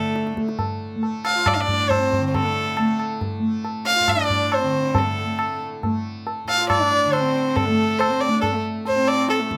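Closely miked and detailed in a small room with a moderate touch of reverb, this brief excerpt of Hindustani classical music moves at 138 BPM in a straight 3/4 with an introspective, solemn mood. A reedy, nasal violin carries the melody up front with an airy bow and gut-string, period-style tone, while a clear sarangi with light vibrato and gliding portamento sings a second line beneath it, its sympathetic strings ringing. A softly plucked, buzzing tanpura drone shimmers underneath, and high-tuned tabla with a short, dry ring enters at 0.2 seconds.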